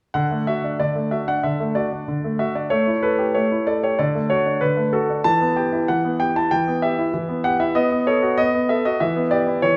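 A polished concert grand piano carries this playful, cheerful classical-period sonatina on its own, sounding up front with a deep bass register beneath its clear upper notes. Set in D major at 95 BPM in a straight 4/4, the piece moves at an easy, moderate pace, with the piano tuned to A4 = 442 Hz. The harmony begins on D, passes through A5 and back to D by 4.0 seconds, then turns toward E minor and B5 before settling on E minor again at 9.0 seconds. The piano spans D3 to A5, and its tone stays clear and present throughout. A moderate recital hall reverb gives the instrument a natural sense of space, and the recording is a short section taken from a longer piece.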